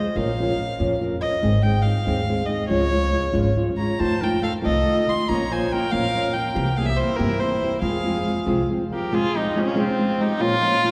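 Romantic and proud, this rubato Mexican folk mariachi excerpt in 6/8 puts a dark, reedy bowed violin with light vibrato and a gut-string tone up front over a small, thumb-plucked nylon-string guitar and a woody, thumpy pizzicato upright bass, while a warm, classical-style trumpet enters on a second line at 3.8 seconds, the ensemble set in a church's long, wet reverb.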